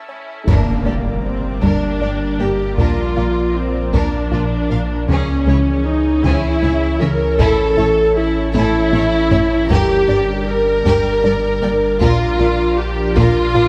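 A 6/8 pulse carries this relentless, futuristic cinematic cue, cut from a longer hybrid orchestral and electronic score, where background taiko drums struck with heavy sticks and a deep, punchy sub bass anchor mellow French horn chords, a smooth chamber violin line, clear bowed violas, very quiet rich cellos and clear double basses, an airy, breathy pad with chorus and a soft, dark, nasal pluck tracing arpeggios, while an electronic impact arrives at 0.5 s and a drum fill at 8.6 s, the whole mix sitting in a moderate scoring-stage reverb.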